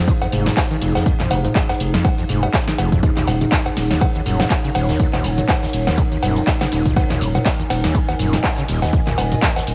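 A lo-fi, cassette-toned home recording with light reverb carries this raw, trippy acid house excerpt at 122 BPM with a swung 4/4 feel, where a squelchy, gritty overdriven acid bass riff with distortion, chorus and tape echo and a deep, saturated sub bass with sidechain pumping sit beneath a warbling, nostalgic detuned pad, while an up-front punchy electronic kick and an analog drum machine of cowbell, handclaps, shaker, toms and cymbals, both re-recorded in a large room, are shaded by a very quiet brushed jazz kit, all moving from Fm7 to Ebm7 at 3.0 seconds.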